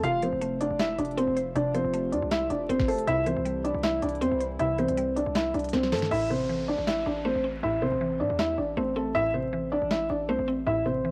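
A half-time trap groove carries this eerie, dark hip hop excerpt, where a soft, felt-muted upright piano with audible action noise sings the melody up front over a woody, chorused mallet-like synth pluck, a very quiet detuned analog pad that holds sustained chords until 6.1 seconds, and a heavy, aggressive distorted 808-style bass, while an overdriven trap kit with a knocking kick, sharp snare and crisp hats plays a fill before its hi-hats drop out at 6.1 seconds, a downlifter enters with the second section and runs from 6.1 to 9.1 seconds, the drums stop at 10.0 seconds, and the whole track carries a lo-fi cassette sheen with vinyl crackle and light reverb.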